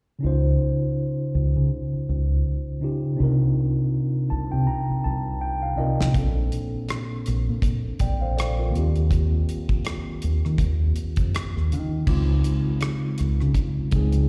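A mellow tine electric piano carries the accompaniment in this late-night, sultry neo-soul and R&B cut, its clean tone heard through built-in speakers and bathed in plate reverb as it moves through Dbmaj9, Cm11, Bbmaj9 and Eb69 chords. Beneath it, a deep dub fingered electric bass sits up front with a dark, round and punchy sound from the start, anchoring the slow 81 BPM groove in 4/4 with a lightly swung sixteenth-note feel. The electric piano plays a fill from 3.9 seconds, and a drum fill at 5.4 seconds brings in a damped 70s drum kit at 6.0 seconds, dry and fat-snared with dark cymbals, a tight kick, rim clicks and a rolled-off top. At 12.1 seconds the harmony returns to Dbmaj9 as a new section begins. The whole performance comes across as a live gig heard through the venue's PA, carrying a light recital hall reverb, and it is cut from a longer piece.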